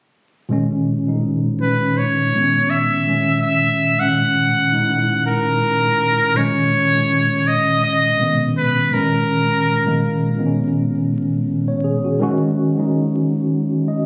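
Caught on a phone in a modest studio room with vinyl crackle, compression and a touch of reverb, this soulful, sensual R&B excerpt sets a mellow tine electric piano, heard as if through its own built-in speakers, beneath a buzzy, metal-muted trumpet whose jazz-style solo, with light vibrato, scooped notes and tape echo, runs from 1.6 to 10.4 seconds over lightly swung sixteenths and lush major-ninth and thirteenth chords.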